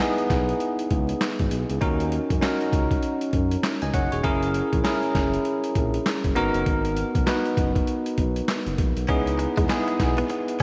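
A bell-like tine electric piano with subtle chorus provides the accompaniment in this punchy, slick new jack swing R&B excerpt at 99 BPM in C# dorian with swung 16ths, over a gritty, pitched-down boom bap sampler-style kit of thumpy kick, snare, hi-hat and handclaps, a smooth gliding synth bass with portamento and vibrato entering at 0.3 s, and, from 9.1 s, a twangy clean electric guitar riff with analog chorus tucked in the background, the mix set in a lush hall reverb with vinyl crackle and bright 1980s-style digital production.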